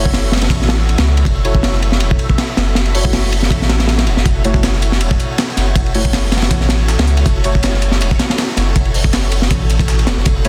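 A dense, heavily limited master and a small room reverb give this short cut from a longer drum and bass track a raw, nostalgic character, sitting on a single F#m7 chord in F# minor at 160 BPM with a light 16th-note swing. Up front, a crunchy acoustic breakbeat kit with a dark, saturated, rolled-off top drives the jungle groove, pairing a tight kick and medium-tuned snare with hi-hat and dusky ride cymbal. A thick, deep sub bass with a triangle tone and fast attack holds the low end beside it, saturated and sustained. Further back, a silky vintage string machine holds soft chords through phaser and ensemble chorus, while a mellow chord stab blends detuned, wave-folded layers that decay into chorus and dub echo. At 4.3 seconds a second, sampler-style break slips in quietly behind, pitched up and tape-warm, its high-tuned snare and hi-hat thinned by high-pass filtering.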